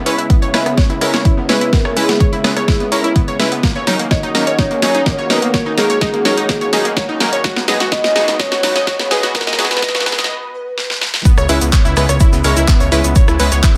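Progressive house at 126 BPM in C# dorian, emotional and driving, this excerpt builds under a filter sweep over C#m7, D#m7/C# and G#m7/C# chords, with a very quiet lush unison pad, bright detuned analog pluck arpeggios with chorus, delay and sidechain pumping, a fat saturated analog bass, punchy supersaw stabs, and a punchy, tape-tinged electronic kick alongside a house kit whose cracking snare, claps, hats, rim click and shaker drive a drum fill. A full, round, dark octave-layered synth lead with chorus, phaser, vibrato and cassette-tape colour carries the melody from 0.3 s until 11.0 s, as a break gives way to the drop at 11.3 s. There a very quiet, dry, damped 70s acoustic kit adds snare, hi-hat and shaker over light reverb.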